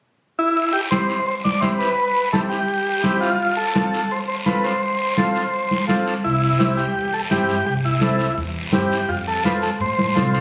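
Joyful and festive, this brief cumbia fragment puts a buzzy, overdriven vintage combo organ up front with heavy vibrato, carrying the melody over a raspy guiro, ringing congas and a reedy, mellow accordion that fills in the harmony. At 6.2 seconds a woody, pizzicato upright bass joins as the chords keep moving between C and F. Captured on a phone in the room, the sound is compressed and wrapped in club reverb, giving it the feel of a lively live set.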